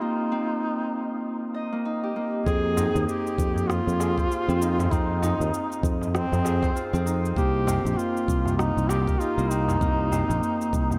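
Earthy and hypnotic, this organic downtempo passage moves at 98 BPM in 4/4 with swung sixteenths, cut from a longer piece. A warm, up-front duduk carries the folk-style melody from the start, its soft attack, vibrato and scooped notes trailed by tape echo. A bright, ringing Celtic harp plays fingerpicked arpeggios alongside it, blurred by a diffuse ambient delay, over harmony that moves from Cm7 to Fm7 and back to Cm7. At 2.5 seconds a growly, punchy fretless electric bass arrives with sidechain pumping, together with a knocking electronic kick and a produced electronic shaker and rim click set in small room ambience. A crisp, deep metal-shell darbuka joins at 2.8 seconds, sitting distant in the background in a large room. The whole mix is dreamy and soaked in cathedral reverb with a 7.2-second tail.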